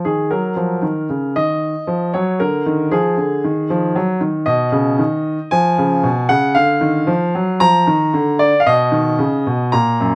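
The rhythm moves in a flexible rubato over a 4/4 pulse at 115 BPM in this classical-period piano sonatina. A solo baby grand carries the whole 10.2-second passage, which is lifted from a longer piece, and its tone is clear and open, with long sustain and an up-front presence. The mood is dramatic and serious, rooted in D#m and moving through A#7/D, B, Fdim and Bb/D before settling on B near 8.7 seconds. The piano's range stretches from Gb2 up to Bb5. A light reverb lends the room a touch of space while the instrument stays close and direct.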